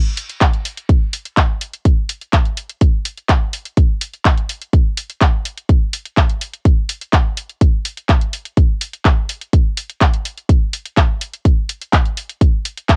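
A straight 4/4 pulse at 125 BPM drives this short techno fragment, cut from a longer piece, with a driving, hypnotic mood. A house drum kit of handclaps and bright hi-hats comes in at 0.2 seconds, and an electronic kick drum follows at 0.4 seconds, both running through to the end at 13.0 seconds. The kick is punchy, layered and produced, sitting up front and louder than the kit. The claps and hats are also layered and up front, with the hats sounding bright. There is little reverb, and the piece is a home recording on cassette.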